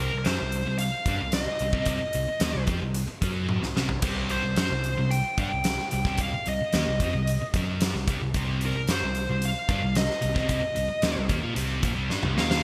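A bright, 1980s-style digital production with light reverb and a small room ambience frames this short hard rock cut from a longer piece, its mood menacing and heavy in a straight 4/4. A sludgy, double-tracked distorted guitar carries the riff with dark, overdriven picking, while a smooth lead guitar, also dark and overdriven, sits up front with the melody. A picked electric bass adds a growly, punchy edge beneath them, its amped tone bright against the guitars. A huge arena drum kit enters at 0.2 seconds, with a fat snare, punchy kick, bright cymbals and toms, all treated with gated reverb, and it breaks into fills at 3.5 and 12.1 seconds. The whole passage rests on a single C minor chord, giving the guitars a brooding, relentless weight.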